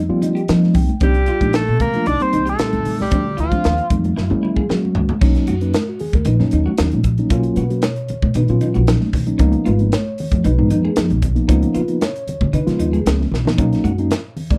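A mellow tine electric piano fill opens this bright, funky jazz fusion excerpt at 115 BPM in F mixolydian, over clean picked electric guitar stabs with lush chorus, a woody pizzicato upright bass up front, a crisp fusion drum kit with a punchy kick and high-tuned snare, and soft-handed congas in the background. From 1.0 to 3.9 seconds a screaming, gritty overdriven synth lead with distortion and phaser carries the melody while a breathy, intimate tenor saxophone adds a second line beneath it. The drums play a fill before the harmony shifts at 5.2 seconds to lush extended chords, and the dry, close sound keeps the small-room drums in a pumping, immediate space.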